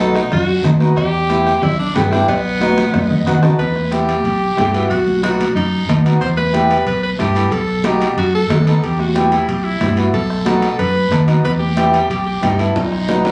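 An edgy alto saxophone opens with a short solo over a reedy, mellow accordion and a dark, round fingered electric bass, and guiro, bombo, congas, and cowbell and timbales join in the background within the first 0.3 seconds of this driving, passionate cumbia at 183 BPM in E harmonic minor. A drum fill and an accordion fill close the opening at 3.6 seconds, and then the saxophone, with light vibrato and a pop style, carries the melody up front over the bass while the harmony moves between Em and B7, backed by bright, high-tuned congas, a raspy guiro and ringing cowbell and timbales. Captured on a phone in a club-like room, the sound is muffled at the top, and this passage, cut from a longer piece, ends on another drum fill.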